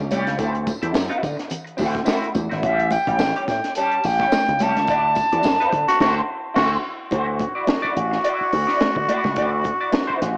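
A 16th-note swing drives this strutting, playful funk groove at 107 BPM in 4/4: a punchy, bright slap bass with an envelope filter and a clean, picked electric guitar through wah ride over a compact cocktail drum kit with a high-tuned snare and tight kick, backed by thin-skinned congas and a jingly tambourine in the background, while a pure, straight-toned concert flute carries the melody from 2.6 seconds over A6 and D9 chords, the band hits an accent at 4.9 seconds, and a raspy, growling tenor saxophone takes the second line from 5.9 seconds, the whole piece colored by moderate spring reverb and the small-speaker sound of a home cassette recording.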